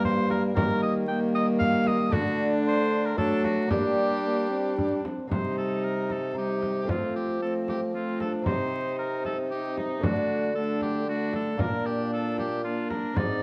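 A bright oboe with light vibrato carries the melody in this solemn, courtly excerpt of a renaissance-style consort dance, moving at 115 BPM in 3/4. Beneath it, a single bowed viola with a reedy, gut-string tone sings a second line, while a dark, smooth-topped trombone and a delicate, fingerpicked lute with doubled gut strings fill out the accompaniment, the lute sitting very quietly in the blend. A present bassoon, also with light vibrato, anchors the bass, and a frame drum played with soft hands marks the dance from a small room. All six parts play together throughout, moving from an opening section into a second one at 5.3 s that runs to 13.4 s. The harmony opens on G minor and passes through chords such as E-flat, C minor, F and D before settling on B-flat. A moderate stone-room reverb and a dark, warm production surround the consort, touched with vinyl crackle.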